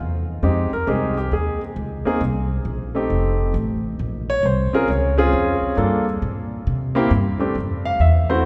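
A woody, thumpy pizzicato upright bass on gut strings opens this cool, smoky swung jazz piano trio excerpt in F minor at 135 BPM, joined at 0.4 seconds by a clear, intimate grand piano, with audible action noise and long sustain, taking a solo melody over chords moving from Fm7 through C7, F7 and Bbm7, both instruments up front in the lingering reverb of a church or concert hall.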